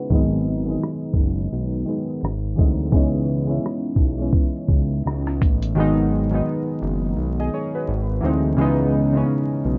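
Vinyl crackle and a dull, low-passed haze sit over a moderate room reverb in this melancholic, nostalgic lo-fi hip hop fragment with a lazy swing. Warbling synth keys, softened by chorus and cassette tape, carry a filter sweep through the opening 5.8 seconds while cycling through G#m7, G#7b13 and C#m9, and a fat, detuned sawtooth bass holds down the low end. A gritty sampler-style kit with a thumpy kick, hi-hat and rim click drives the first half, then drops out at 5.8 seconds, leaving the keys and bass to repeat the progression to the end.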